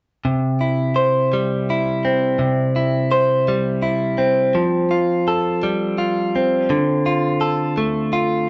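A clean, picked electric guitar, recorded direct with a compressed, up-front warmth, carries this romantic, heartfelt pop excerpt in C major from 0.2 to 8.5 seconds at a slow 56 BPM in 6/8, moving from C to Fadd9 and then Dm7 under a wet studio reverb in a live-room sound whose top end is capped at 7.7 kHz.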